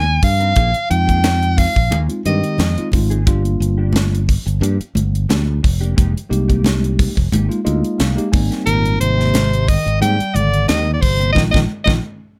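Lightly reverberant and polished, this intense, driving electric jazz fusion excerpt puts a clear, vibrato-laden soprano saxophone melody with scooped notes up front, shadowed briefly at 2.3 seconds and again from 8.7 seconds by a dark bass clarinet in the background, over a crisp drum kit with a high-tuned snare and punchy kick, warm fingered electric bass, bright congas played with hard hands, a clean tine electric piano that takes a fill at 7.3 seconds, and mellow guitar stabs coloured with ensemble chorus and slapback echo, before the band closes on an accent.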